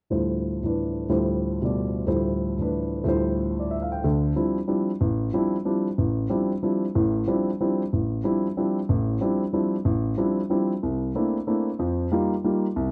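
Spiritual and intense, this short jazz passage cut from a longer piece moves at a brisk 185 BPM in a swinging 3/4, centred on D dorian with tuning set slightly low at A4 = 439 Hz. A dark grand piano plays alone from start to finish, spanning a broad register from A1 up to G5. Its tone is mellow, with short sustain that keeps each chord and note clipped, and it sits up front in the sound. The harmony rests on a Dm11 for most of the passage before moving to C13 at 10.8 seconds and settling on F9sus4 at 11.8 seconds. The recording has the dry, close character of a small 1970s-style studio, with a touch of room ambience around the instrument.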